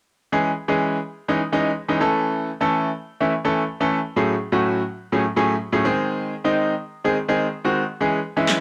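Energetic yet bittersweet, this short dance-pop excerpt moves at 125 BPM in a straight 4/4, set in C# harmonic minor with tuning slightly below standard at A4 = 439 Hz. A bright grand piano carries the accompaniment from 0.3 seconds, sitting up front with a polished, brilliant tone and short sustain, colored by a cassette-tape character and ranging from A2 to A4. Its harmony runs through C#m, A, F#madd9/A and G# before returning to C#m near the end. At 8.5 seconds, layered electronic handclaps and a fat, overdriven snare enter up front, carrying a produced feel and the sound of being re-recorded in a small room. A light studio reverb and the intimacy of a home cassette recording frame the whole passage.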